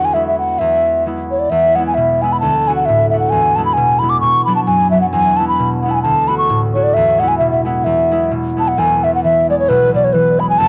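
Celtic folk in the form of a rollicking, bright polka, this short excerpt moves at 132 BPM in 2/4 with a swung eighth-note lilt and sits in E mixolydian, tuned slightly low to A4 = 439 Hz. A mellow baroque flute carries the melody from B4 up to D6, its wooden, airy tone shaded with vibrato and tongued articulation, and a touch of tape echo trails its phrases. Beneath it, a concert harp supplies fingerpicked accompaniment ranging from E1 to F#4, its acoustic strings ringing out with a warm resonance. Both parts sit up front throughout, with the flute the more prominent of the two. The harmony circles between E, D and Bm, and the tune shifts into a new section at 8.8 seconds. The sound is dry and close, in the manner of a 1970s studio recording, with only light reverb.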